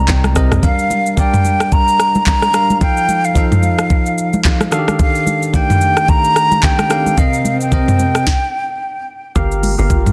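Deep and late-night in mood, this amapiano excerpt from a longer piece moves with a swung feel. An airy concert flute carries the melody up front, expressive and tongued with vibrato and lifted highs, trailed by a digital delay. A bell-like, clean tine electric piano opens with a fill over a thick, saturated sub bass that sounds only until 0.6 seconds, then comps through a progression of seventh and extended chords. Beneath them, an electronic afro-pop kit sits up front with a knocking kick, sharp snare, smooth hats, handclaps, rim clicks, shaker and toms, while soft-handed, close and dry congas stay in the background, and a very quiet electronic swell sounds just before the piano drops out at 8.3 seconds for a brief stop. At 9.4 seconds a hollow, bouncy log drum bass arrives with dark, chorused organ stabs echoing through delay, joined moments later by a mellow, ethereal pad breathing with chorus, phaser, reverb and sidechain pumping. 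The dense, heavily limited mix carries light digital ambience.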